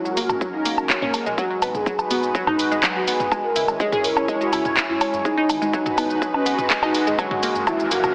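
A straight 4/4 pulse at 124 BPM drives this melancholic, dramatic melodic techno build-up in G# minor, its chords moving from F#add9 through G#m7 and C#m. An up-front house kit of handclaps, shaker, toms, woodblock and warm hats pumps with sidechain, while a punchy, layered kick with a high-pass filter enters at 0.4 seconds. A smooth, expressive sawtooth lead with vibrato, chorus and tape echo carries the melody under a filter sweep, framed by a thick detuned unison pad with phaser, round, nasal plucked arpeggios, a warbling lo-fi tape-like pad and a deep, rumbling saw bass in the background; a very quiet riser arrives at 6.3 seconds, and the mix sits in lush hall reverb yet is squeezed into a heavily compressed, AM-radio-like sound.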